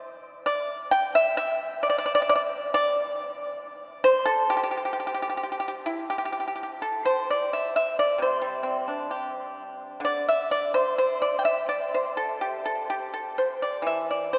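A solo pipa, played with fingerpicks and sitting close and percussive at the front, opens this elegant, pastoral Chinese traditional excerpt with a free, rubato feel, ranging from its low register to its high notes and moving into a new section at 6.3 seconds, all ringing out into a vast, echoing cathedral-like space.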